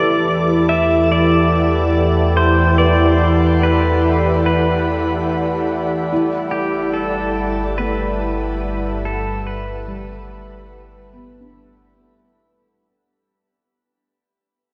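Ambient piece at 72 BPM, spacious and melancholic, where a bright, twangy pedal steel guitar with tape echo carries the melody up front until 10.7 seconds over a warbly, detuned tape-like pad with chorus, a felt-muted upright piano's soft arpeggios, a deep rumbling drone bass entering at 0.5 seconds, and a reedy hand-pumped harmonium fading in from the background, all bathed in a long shimmer reverb with a dark production as Em11 gives way to Gmaj7 at 6.1 seconds and the excerpt fades out from 3.9 seconds.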